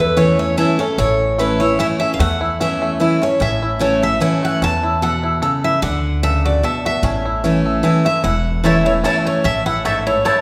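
Bathed in a wet recital-hall reverb, this lively, joyful bluegrass fragment in A major moves at 149 BPM in a swung 3/4, with a twangy, percussive fingerpicked banjo and a bright, up-front dreadnought guitar sharing the melody above a full-bodied jumbo guitar accompaniment and a thumpy, dark pizzicato upright bass on gut strings, while a woody, double-strung mandolin adds stabs from 8.6 s.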